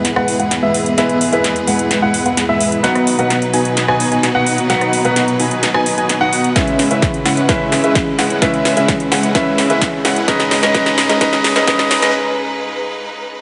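A straight 4/4 pulse at 129 BPM drives this anthemic, triumphant festival progressive house build-up in E major, cut from a longer piece, with a big-room dance drum kit running a fill from the start to 12.1 seconds, its punchy snare and metallic hats sitting up front. An electronic kick drum joins at 6.6 seconds with a layered, punchy thump, while a very quiet riser enters at 9.0 seconds. A dense, huge supersaw riff, detuned and compressed with a cassette-tape grain and vibrato, moves through a filter sweep with delay, alongside short-sustained grand piano arpeggios high in the register. Beneath them a soft, felt-muted upright piano with audible action noise plays accompaniment and a clear studio string section holds bowed chords in the background, both pumping with the sidechain. The harmony moves from E to B, then C#m7 and G#m, and at 12.1 seconds the drums and leads drop out for a brief break where the upright piano and strings ring on in a wet concert-hall reverb.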